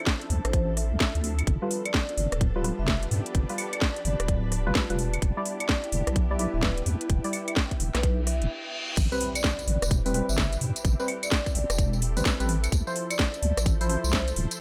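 A deep, wobbling bass sits up front in this moody, soulful two-step garage cut, its saturated, dark tone anchoring a swung 128 BPM groove in A minor. A tight electronic kick and a tape-warm garage kit drive the rhythm with a cracking snare, metallic hats, claves, rim clicks, tambourine and crash cymbal. Deep, mellow chord stabs with a ring-modulated, moving-notch colour punctuate a progression moving from Dm9 through G7 and Em7, while a vibraphone played with soft mallets rings in the background with medium motor vibrato and delay. Beneath it all, a silky vintage string machine holds sustained chords, joined by an ethereal, wave-folded airy pad that drops out at 8.5 s. A reverse cymbal rising from 8.3 s leads through a short break into the drop at 9.0 s, where an electronic impact lands and the harmony settles onto Am9 before returning to Dm9, all within a digital ambience cut from a longer piece.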